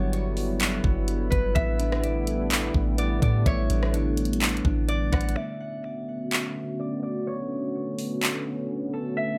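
Atmospheric cloud-rap hip hop with a hazy, spacious mood and a half-time feel, built on a deep, detuned analog pad with chorus, sidechain pumping and a low-pass filter, while a fingerpicked, ringing concert harp carries the melody through delay and filtering. A round, sine-toned 808-style bass and a clean, compressed electric guitar playing arpeggios in the background both drop out at 5.4 s, as the chords move from Gmaj7 and A9sus4 to Bm9. The produced R&B drum kit, with a knocking kick, handclaps, hi-hat and rim click sitting up front in a small room, plays until 8.3 s, all set in a digital ambience.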